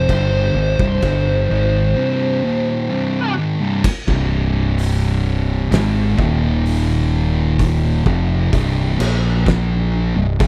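A compressed fuzz lead guitar rings out a short melody with slapback echo over two dark, distorted rhythm guitars and a growling, overdriven fingered bass, with an oversized low-tuned drum kit crashing in at 0.1 seconds. The lead falls away at 3.3 seconds, leaving a heavy, sludgy stoner and doom metal groove in 4/4, where the thick fuzz guitar and bass sit up front and the second guitar churns behind them. The drums have a punchy kick, fat snare and gritty, dark cymbals in a pumping stone room, while the overall sound stays dry through this slow section cut from a longer piece.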